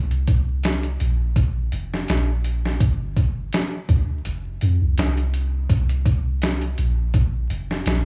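A home recording on cassette with vinyl crackle and small room reverb, this short trip hop excerpt sits at 83 BPM in 4/4 with a slight swing on the sixteenths, its mood cinematic and hypnotic. A soft 808-style bass carries the low end from the start, deep and round with a sine-like tone, a fast attack and a decaying body, ranging from F1 to F2. The sampler-style drum kit enters at 0.1 seconds with hi-hat, a thumpy kick and a medium-tuned snare, sounding compressed, pitched down and muffled. Overdrive and cassette tape treatment roughen the drums, which feel re-recorded in a small room. Both parts sit up front and run together through 8.1 seconds.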